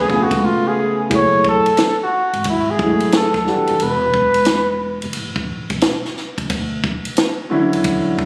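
A mellow, close-miked flugelhorn with vibrato and slapback echo leads this smoky, cool jazz-hop cut, carrying the melody up front until 5.2 s. Beneath it, a dark, vintage baby grand piano with long sustain lays down smooth chords, an upright bass adds woody pizzicato lines, and a dry cocktail drum kit with a high-tuned snare, punchy kick, hi-hat and ride cymbal drops out briefly before 1.1 s, with a break arriving from 3.8 to 6.5 s. The swung groove sits in a club-like reverb with compression, caught on a phone in the room.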